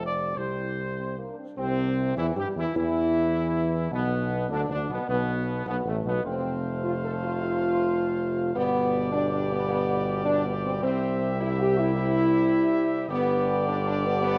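Moving at a steady, straight 104 BPM in 4/4, this regal, solemn classical brass excerpt in C major sets a mellow trumpet section's lightly vibrato-tinged melody over dark, distant French horns and tight, softly attacked trombones holding sustained chords, with an up-front tuba anchoring the bass through a progression from C through Asus24, F and G, all bathed in the moderate two-second reverb of a scoring stage.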